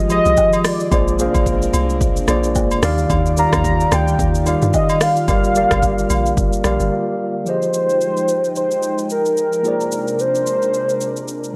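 Amapiano at 110 BPM in 4/4 with a swung sixteenth feel, this soulful, hypnotic cut sits in F dorian and moves through rich chords like Fm9, Bb9, Ebmaj9 and Gm7. A velvety sawtooth synth lead carries the melody up front, its detuned unison voice colored by chorus, vibrato and tape echo, while a mellow tine electric piano plays clean accompaniment beneath it. An airy, breathy pad holds sustained chords with slow attack and long release, pumping under sidechain and chorus. The deep, round log drum bass gives percussive, dark, decaying notes until 6.9 s, when it drops out for a short break alongside the agogo bells, woodblock, egg shaker and group handclap, which sound acoustic and set in a small room. A punchy electronic deep house kit with metallic hats, kick, rim click and shaker runs from 0.1 s through both sections, into the second section at 7.5 s, all in a dry, gritty hardware sound with little reverb.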